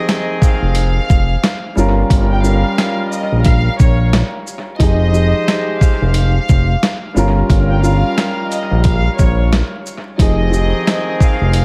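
Boom-bap hip-hop at 89 BPM in F minor, reflective and moody, with a swung 16th-note feel, drifting between Fm9 and Gm7b5 in a cut from a longer piece soaked in echo and vinyl crackle. A mellow, boxy grand piano carries the accompaniment while a distant, reedy violin section with gut-string tone and light vibrato sings the melody, and a roomy horn section adds stabs, all three parts colored by analog delay and filtering. The gritty, compressed sampler-style drum kit enters at 0.1 seconds up front with a thumpy kick, medium-tuned snare, hi-hat and shaker, and a smooth, evolving sawtooth-and-square synth bass with vibrato joins at 0.6 seconds, sitting prominently beneath.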